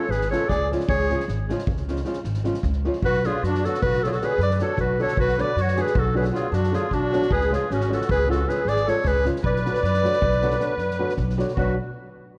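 Balkan wedding-band folk in a fiery, virtuosic 11/8, cut from a longer piece, with a bright, close-miked classical clarinet out front carrying the melody over a reedy, shimmering musette accordion second line, dark thumb-plucked flamenco guitar accompaniment, a woody pizzicato upright bass, and a distant, roomy soft-mallet drum kit with a punchy kick, all set in a concert hall reverb and coloured by worn, warbly cassette-tape pitch drift.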